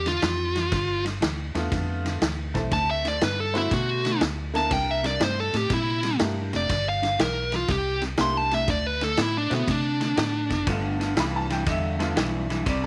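Soulful and laid-back, this excerpt from a longer electric blues shuffle swings easily in 4/4, moving through G7, D7 and C7 chords. An up-front lead guitar with a dark, smooth, overdriven tone carries the melody until 10.7 seconds, after which a brief closing passage settles back on G7. Beneath it, a twangy electric guitar at the edge of break-up plays a fingered riff, while a foam-muted, round vintage electric bass holds down the low end. A vintage drum kit with kick, snare and ride cymbal sounds gritty and saturated, with a tight kick and a rolled-off top. From 1.5 seconds a jangly, metallic tack piano adds percussive accompaniment, and the mix sits in light studio reverb.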